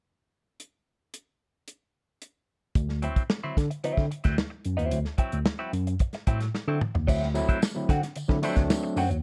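A dry, smooth soul drum kit opens this playful, gritty funk excerpt at 111 BPM in D mixolydian, joined at 2.8 seconds by a gritty, amp-driven tine electric piano bass line on a D9 chord and at 3.0 seconds by a clean, compressed electric guitar through wah, before a drum fill leads into a final section at 7.1 seconds where jingly tambourine enters, followed at 7.3 seconds by bright, overdriven electric piano stabs, all set in light reverb with a dark, warm production.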